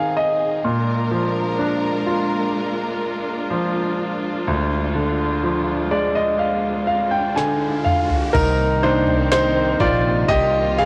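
A bright concert grand piano leads this heartbroken, emotional pop ballad in C minor, its brilliant, up-front tone carrying deep bass and a short sustain as it plays fills at the opening and again from 5.4 seconds before taking a solo over a Cm7 chord at 8.3 seconds. Beneath it, a studio string section holds sustained chords with a smooth top and vibrato, moving from Ab through Bb7 to Ddim at a slow 62 BPM in a straight 4/4. An electronic riser sits in the background leading into the change, while a smooth R&B drum kit of crash cymbal, kick, snare and toms, with a knocking kick and woody snare re-recorded in a small room, enters at 7.4 seconds with a fill. A fretless electric bass, direct and amped, joins at 8.4 seconds in a low register. The piano, strings and drums carry the colour of cassette tape, and the whole piece sits in light reverb with the feel of a home recording, cut from a longer work.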